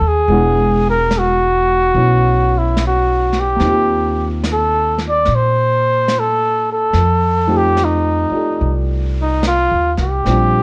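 A late-night, romantic jazz ballad at 72 BPM in 4/4, with a gentle swing on the eighth notes, cut from a longer piece. A breathy, mellow trumpet carries the melody up front, its light vibrato lending a tender, intimate quality as it moves between Eb4 and D5. A grand piano with a short sustain accompanies through chords of E9, Eb69 and F9, while a woody pizzicato upright bass sits close and present in the low register. A vintage brush kit joins at 0.3 seconds, its muffled, rolled-off snare and hi-hat set quietly in a small room. Light reverb surrounds the group, and a worn, warbling old-tape character with drifting pitch gives the whole recording a nostalgic, cassette-like haze.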